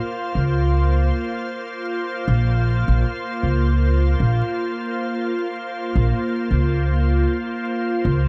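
Vinyl crackle and a light small-room reverb frame this brief, deep and spacious ambient dub fragment in Bb minor, moving at a relaxed 78 BPM with a gentle swing. A soft, organ-like pad with a pure sine character, ensemble chorus and its own reverb holds a sustained Bbmadd9 chord up front from the start, its soft attack and long release giving it a calm glow. From 0.4 seconds, a woody, thumpy pizzicato upright bass sits low and prominent beneath it.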